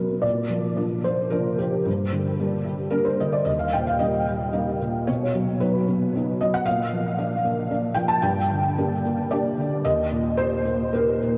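Peaceful and hopeful, this fragment of a longer neoclassical minimalist piano piece unfolds in Bb major at a rubato 112 BPM in 3/4, with a solo felt-muted upright piano playing throughout its 11.4 seconds: soft, mellow and intimate, sitting up front with audible action noise, colored by ensemble chorus and analog delay, and moving through Bb, Gm, Eb and B before returning to Bb, Gm and Eb inside a dreamy, reverb-soaked space with a huge 6.1-second ambient tail.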